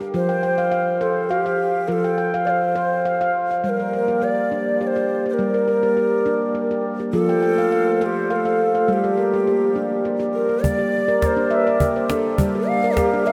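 The mellow, hollow cedar flute, airy with a straight tone and soft attack, carries the melody from 0.2 seconds, trailed by a diffuse ambient delay and placed up front. Beneath it, a ringing stainless-steel handpan played with the fingertips spins arpeggios from the very start, giving this hypnotic, meditative world piece its pulse at 103 BPM in a lightly swung 3/4, set in G minor with the harmony moving between F and Gm. At 3.6 seconds a glassy, ethereal glass harmonica enters with slow-attack sustained chords, its pure tone shimmering with a gentle beating and sitting a little lower in the mix. At 10.6 seconds the music shifts into a new section as a snappy, close and dry cajon with snares adds percussion up front. The whole dreamy mix is soaked in a huge ambient reverb with a long 7.7-second decay, and the recording is cut from a longer piece.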